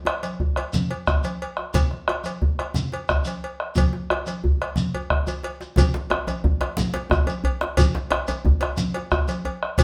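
West African traditional drum ensemble music in 12/8 at 119 BPM, this driving, earthy excerpt sets a round, up-front bombo beneath thick-skinned congas, a medium-tuned djembe played with soft hands, a metallic cowbell and a grainy, band-limited shekere, all recorded live together in one room with a wet studio reverb. A drum fill at 4.9 seconds leads into a new section at 5.8 seconds, where a second, deep djembe joins the ensemble through to the end.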